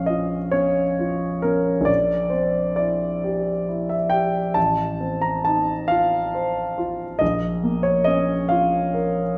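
In a rubato 6/8 lilt at about 45 beats per minute on the dotted quarter, this brief fragment of a longer romantic nocturne unfolds on a solo grand piano, wistful and mournful in mood. The piano sits up front with a warm, present tone and long sustain, ranging from A1 to Bb5 as the harmony moves from Bbm through C7/Bb and F7/A before returning to Bbm at 7.2 seconds. A wet recital hall reverb surrounds the instrument, giving the 9.4-second passage a spacious, lingering air.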